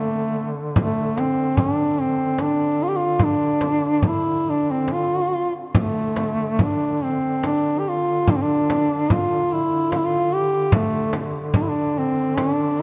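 A mellow duduk carries the melody up front, its vibrato-laden folk phrasing ranging from A3 to G4 in a longing, solemn Caucasian lament in D minor. Beneath it, a second duduk sustains a low drone on D3, sitting further back in the mix. A small, bright frame drum enters at 0.8 seconds, close and up front, struck with hard hands. The piece moves in a rubato 3/4 feel around 73 BPM, tuned slightly high at A4 = 441 Hz. A moderate church reverb with a long 3.9-second decay surrounds the parts, giving this fragment of a longer performance a spacious air.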